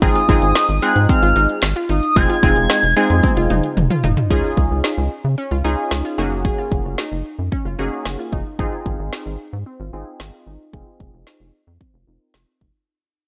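A straight deep house kit with a deep kick, woody snare, dark hats, claps and toms drives this bright, wistful synth-pop excerpt, where a rubbery, hollow square bass and a punchy, detuned polysynth comp sit up front beneath a round analog pluck arpeggio; a mellow, warbling horn-like lead with vibrato sings the melody only until 3.8 s, and after a drum fill a filter sweep and fade-out begin at 4.3 s.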